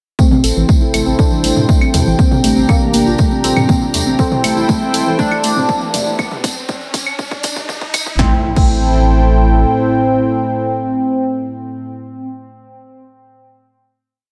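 A dreamy, reverb-soaked mix opens this dark, dramatic melodic techno piece in A phrygian at 120 BPM, where an overdriven four-on-the-floor kick sits up front beside a punchy, tape-warm analog drum machine, a distant jingly tambourine in sixteenths and a round, nasal bass galloping in sixteenth notes, all driving a build from 0.2 to 8.2 seconds with a drum fill and a background riser and impact. Over this, a juicy, resonant polysynth riff and a woody, wave-folded pluck looping a 6-step sequence that drifts against the bar move under filter sweeps, while a smooth, detuned pad holds chords and an evolving pulse-width drone hums low behind them. At 8.2 seconds the percussion drops away and the melody, pad and drone sustain a final Am7 chord until about 12 seconds.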